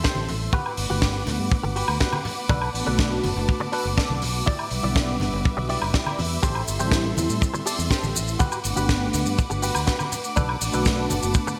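A rich bowed string section holding sustained chords with sidechain pumping opens alongside a twangy, clean electric guitar riff run through analog chorus, filter and delay, an up-front tight kick and a tight funk kit with a high-tuned snare and gated reverb, before fingered electric bass, very quiet congas and egg shaker, and a detuned sawtooth analog pad enter within 0.4 seconds, carrying this groovy, sleek nu-disco groove at 122 BPM in A dorian through Am7, Gmaj7, Bm7 and Em7 with a bright 1980s-style digital sheen and lush hall reverb.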